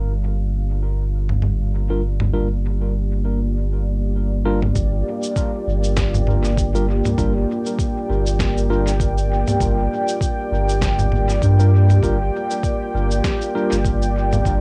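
A deep, moody sawtooth pad, detuned and chorused with built-in reverb and a long release, holds a Gm7 chord up front as its filter sweeps through the opening 4.8 seconds, alongside a round sine sub bass, in this hazy, spacious ambient dub excerpt at 99 BPM in G minor with a swung 4/4 feel. Muffled, pitched-down electronic congas, cabasa and snare enter at 1.3 seconds with small-room ambience and dub echo. A bright, clean tine electric piano adds low-pass-filtered stabs from 1.9 seconds, a compressed, thumpy electronic kick joins at 4.8 seconds, and the cassette home recording lends a tape-softened haze under light reverb.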